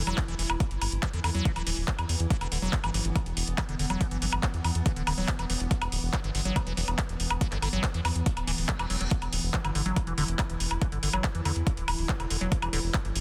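A dense, heavily limited modern master with light reverb carries this hypnotic, psychedelic trance excerpt, anchored by a punchy, up-front electronic kick and a layered techno kit of handclaps, metallic hi-hat and woodblock, both re-recorded in a small room. A deep, round analog bass with tube saturation sits beneath a squelchy, resonant acid riff soaked in phaser, 12-bit sampler grit, digital delay and sidechain pumping. Above them, an evolving wavetable pad holds detuned, warbling, bright chords through chorus and its built-in reverb, while a reverse cymbal rises in the background at 8.6 seconds.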